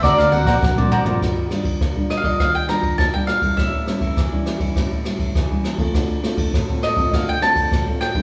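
Nostalgic and yearning, this samba and choro fragment sets a woody, double-strung mandolin melody with slapback echo over a thumb-plucked nylon-string guitar. A crisp, bright cavaquinho and a round, foam-muted electric bass play only through the opening 1.2 seconds, while a brushed jazz kit with dark cymbals and a punchy kick plays a fill from 0.6 to 1.2 seconds and continues throughout. The harmony moves from D7alt through Ebmaj9 and A7 to Dm7, and it all sounds like a live gig heard through a venue's PA, with club reverb.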